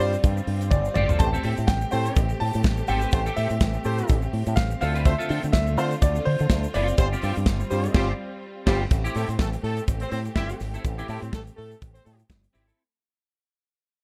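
A punchy, envelope-filtered fingered bass drives this danceable, sultry disco cut with a swung sixteenth-note feel, set against a tight, airy studio drum kit that opens with a fill, a grainy shaker in the background, twangy picked clean guitar with ensemble chorus, mellow octave-doubled horn stabs and lush bowed strings holding sustained chords beneath an intimate baby grand piano melody that carries the tune until 8.4 s, as a band accent from 7.9 s gives way to a fade-out from 8.9 s in this dark, warm production.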